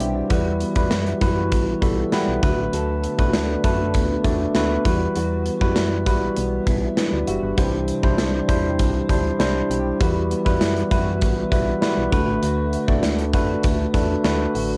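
A clean tine electric piano sits up front through its built-in speakers, carrying the chords and adding a brief fill between 1.5 and 2.7 seconds, with a touch of cassette tape coloring its tone. This is a dramatic, moody 1980s-style pop fragment cut from a longer piece, in E minor at 99 BPM with a straight 4/4 feel. The harmony moves from Emadd9 to Bm7 and back, then to Cadd9 before returning to Emadd9 and Bm7. A gated 80s drum kit is just as prominent, pairing a punchy kick and a medium-tuned snare with hi-hat in a bright stone room. A solid, round, dark FM bass with a fast, decaying attack anchors the low end, while a picked, compressed electric guitar at the edge of break-up plays a riff in the background through analog chorus and tape. The whole recording has the moderate booth ambience of a home recording on cassette.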